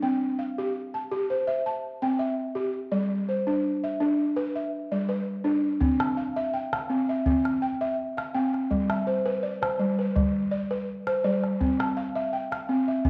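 Heard through a worn, warbling cassette with a reverberant recital-hall glow, this flowing, joyful piece of West African traditional xylophone music, cut from a longer work, opens with a woody, buzzing balafon played up front with soft rubber mallets, its arpeggios moving between C and G, before a small, band-limited calabash joins at 5.8 seconds to add percussion through to the close at 13.1 seconds.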